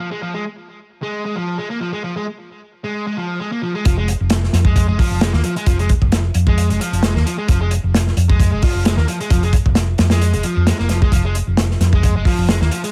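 Playful and funky, this breakbeat excerpt at 132 BPM in F minor opens with a dark, double-tracked fuzz guitar riff alone, filtered and treated with digital delay, until a drop at 3.9 seconds brings in a round, hollow-body fingered electric bass and a crunchy, saturated breakbeat kit with gritty, rolled-off hi-hat, tight kick and medium-tuned snare, both up front in a dry, small-room sound.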